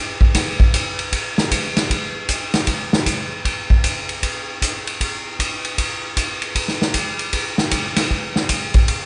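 Jazz in a swinging 4/4, this short cut from a longer piece carries an energetic, joyful mood driven entirely by a big-band drum kit. The kit enters at 0.2 seconds and plays through to 9.0 seconds, with hi-hat, kick drum, ride cymbal and snare drum all in the mix. Its sound is acoustic and natural, with a medium-tuned snare, a punchy kick and a sense of a big room, placed up front for close presence. The eighth notes carry a moderate swing feel that keeps the groove buoyant. The overall recording is fairly dry, with a top end that stays rounded and soft rather than bright.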